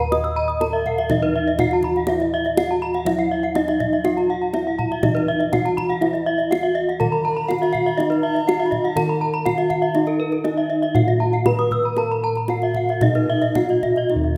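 A straight 4/4 pulse at 122 BPM drives this brilliant, shimmering fragment of Balinese gamelan in Eb pelog, where a mellow, soft bronze metallophone carries the melody while two more metallophones ring out arpeggios above it, one close and full under a wooden mallet, the other bright and airy under a horn mallet, their paired tuning producing shimmering beats. Dark, round bossed gongs anchor the bass with a smooth, beating tone, and a tight, dry kendang struck with hard hands keeps the percussion close and near. At 7.0 s a breathy, reedy xiao joins as a background second line, and the whole ensemble sits in a moderate stage reverb, cut from a longer piece.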